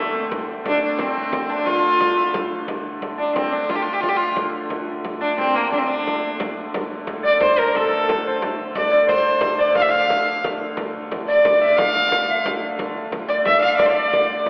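Driving and mysterious, this medieval dance in D minor moves at 119 BPM in a straight 6/8, cut from a longer piece. A clear, earthy fiddle carries the melody up front with light vibrato, its bowed tone still sounding slightly distant, while a bright, ringing Celtic harp, fingerpicked in the background, plays a second line. Beneath them a rich, reedy hurdy-gurdy holds a wheel-bowed drone, and a deep, large frame drum enters at 0.3 seconds with a close, dry presence. At 7.2 seconds, shortly after the opening passage repeats, an airy, woody pan flute joins in the background with vibrato and a crisp, chiffing attack. The whole is heard from further back in a concert hall with a 2.6-second reverb and a telephone-like sound.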